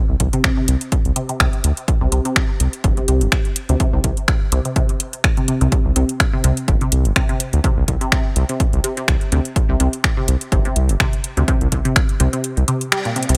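Minimal techno at 125 BPM in 4/4, with a light 16th-note swing, this hypnotic, quirky excerpt sits on a C5 chord throughout. A round, deep analog bass carries the low end between G1 and D2, its sawtooth and sine tones touched by ring modulation, tube saturation and sidechain pumping, while its sound stays mellow yet evolving. Up front, a dry, punchy electronic kick drives the groove, joined by a layered garage kit of finger snaps and metallic, tape-toned hi-hats. Above them, a juicy, squelchy blip pluck riff between Bb2 and G3 flickers with a detuned, resonant filter bite, colored by phaser, dub echo and its own sidechain pumping. Light reverb frames the mix, and near the end the kick falls away at 12.4 seconds, leaving a band accent at 12.9 seconds and a drum fill at 13.2 seconds to close out the cut.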